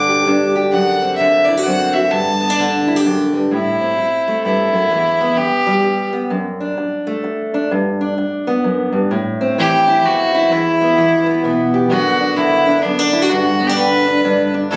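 In a swung three-beat lilt, this reflective, haunting folk fragment pairs a clear, earthy bowed fiddle with light vibrato, which rests at 6.1 seconds and returns at 9.6, against a warm fingerpicked steel-string acoustic guitar with audible finger squeak that plays throughout, both up front in a phone recording of the room with club reverb and compression.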